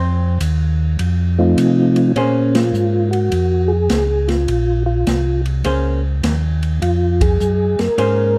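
Soul jazz organ trio in Bb minor, swinging at 103 BPM with a smoky, late-night mood, cut from a longer piece. A dark, clean, picked hollow-body archtop guitar opens with a short solo over an F7 chord before settling into accompaniment, while a mellow tonewheel organ carries the bass line, round and up front with a touch of key click. The drum kit, entering at 0.4 seconds, sounds acoustic and open in a small room, with dark cymbals on ride and hi-hat, a medium-tuned snare and a boomy kick. At 1.4 seconds a second tonewheel organ takes the melody with a soft, flute-like, percussive tone, colored by chorus vibrato and a slow rotary speaker. The harmony moves to Bbm9 at 2.2 seconds, and the band hits an accent at 2.5 and again at 7.1 seconds. The mix sits in light reverb with a dark, warm production.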